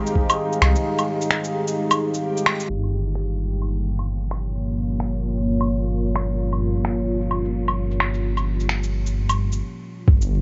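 A light reverb, a veil of vinyl crackle and a low-pass filter that rounds off the top end give this short future garage excerpt a muted, dusty sound. At 130 BPM in 4/4 with a 60% swing on the sixteenths, it feels wistful and melancholic, moving from Fm9 to Gm7b5 at 2.7 seconds, where a filter sweep begins. A deep, moody pad holds sustained chords throughout, its detuned sawtooth unison and sub octave softened by chorus and built-in reverb and pulsed by sidechain pumping, while a reversed, dreamy triangle texture swells in the background for the opening 2.7 seconds. Layered electronic shaker, woodblock and finger snaps sit up front, joined only at the very start and end by a compressed, pitched-down, overdriven kick with a thumpy, muffled punch. Beneath them a rumbling, detuned saw bass with a beating, saturated tone pumps against the sidechain, and the arrangement passes through a break, a band accent and a stop before the clip cuts off.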